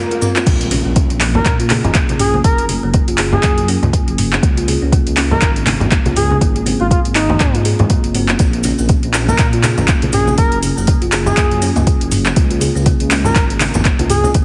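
A driving 121 BPM afro house groove in 4/4 with a 16th-note swing rides on a deep, tape-warm electronic kick and a produced afro-pop kit of metallic hats, handclaps, toms and crash, while low-tuned congas with thick skin sit in the background and a grainy, distant cabasa ticks briefly at the start before returning at 8.4 seconds. After a brief background swell, the drop lands at 0.5 seconds with an impact and a dark, rumbling detuned saw bass pumping under woody, ringing kalimba arpeggios with dub echo, as an expressive, smooth synth lead with chorus and vibrato enters at 1.4 seconds over a Bb minor cycle of Bbm, Gb, Db5 and Ab7. The spiritual mood comes through a heavily compressed, radio-like sound with light reverb, in this cut from a longer piece.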